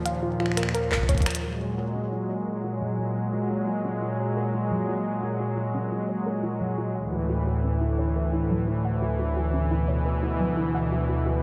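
A straight 87 BPM pulse in 4/4 drives this glitchy, intricate IDM excerpt, where clicky finger snaps, handclaps and hi-hats with gated reverb and delay sound only until 1.5 s, a deep, up-front electronic kick enters at 0.9 s just ahead of a drum fill at 1.1 s, and a smooth, detuned sawtooth analog pad with 12-bit sampler grit, chorus and sidechain pumping holds D#sus2, F#add9 and Dsus2 chords while a soft, round, dark pluck arpeggio with chorus and digital delay sits in the background under a filter sweep from 1.4 s, inside a lush hall reverb and a bright 1980s-style digital sheen.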